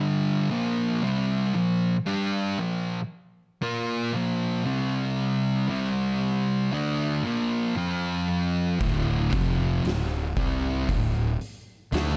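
Two thick, picked fuzz guitars open this brooding, hypnotic stoner and doom metal excerpt at a slow 58 BPM, grinding through G5, Bb5, C5 and F5 chords before a fuzzy, overdriven fingered bass and an oversized low-tuned drum kit with a fat snare and punchy kick join at 8.8 seconds on D minor, the dark production sitting in a small room.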